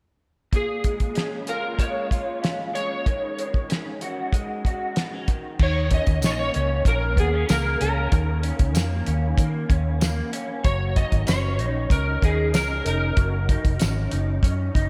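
A dreamy, reverb-soaked mix carries this mellow, lonely indie bedroom-pop excerpt in Eb minor at 95 BPM, where a dark, slightly broken-up slide guitar sings the melody with chorus and delay over a warbly, lo-fi electric guitar through a small old amp and a cloth-damped, thuddy drum kit, before a round, foam-muted vintage bass enters at 5.6 seconds and a jingly tambourine joins in the background at 6.2 seconds.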